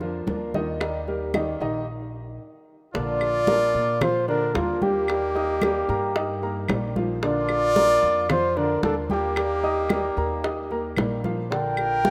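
This Cuban son and guajira excerpt moves at an easy 112 BPM in Bb major, with a warm, sunny mood. A smooth, vintage-toned grand piano plays short-sustained arpeggios over pizzicato upright bass with a woody, steel-string sound. Fingerpicked swing-style acoustic guitar sits boxy in the background, finger squeaks audible. Tight, high-tuned bongos played with soft hands and damped, thin-skinned congas drive the groove, while close, dry claves tick in the background. After a brief stop at 1.9 seconds, two trumpets enter near 2.9 seconds: a bucket-muted lead, dark, veiled and breathy with scooped notes, sits intimately up front, and a punchy, close-miked bright trumpet carries a second line beneath it. A lush hall reverb surrounds the rough, home-demo mix.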